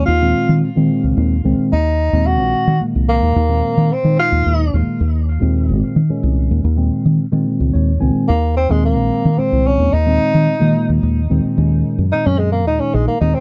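Set in a straight 6/8 at 73 BPM, counted in dotted quarters, this short cut from a longer electric jazz fusion piece feels intense and funky despite its unhurried pace. A fingered electric bass sits up front and carries the low end with a dark, round, punchy tone, foam-muted and direct. Over it, a tine electric piano supplies clean, mellow accompaniment coloured by a phaser, stepping forward with a brief fill at 7.5 seconds. The tenor saxophone carries the melody in a soft-attacked, jazz-style voice with vibrato, sounding slightly distant and roomy yet still prominent, and it breaks off before returning at 8.3 seconds. The harmony moves through rich chords such as Dbmaj13, Ebm6 and Bbm11, and at 11.6 seconds the music shifts to a new section on Ebm7 as the saxophone takes a short solo. The sound is dry and close, recalling a 1970s studio.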